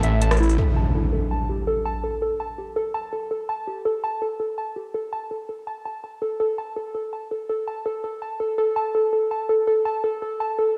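Recorded at home onto cassette, this dark, heavy half-time drum and bass fragment sits in a moderate spring reverb that lends it a roomy haze. A warbly, dusty pluck carries arpeggios across the whole fragment, a lo-fi blend of square and sawtooth tones with a noise layer, a filter sweep and a lush chorus, its tape-worn character trailed by analog delay. At the very start, a swirling, thick detuned saw bass with a phaser and saturated edge briefly joins it up front, alongside an electronic, layered drum kit whose metallic hi-hats and rim click carry a tape-warmed, small-room grit. Both stop by 0.6 seconds, when an electronic impact hits and sounds until 2.0 seconds. From there the evolving, decaying pluck plays alone, its dark arpeggios drifting through the spring reverb until the fragment cuts off at 10.8 seconds.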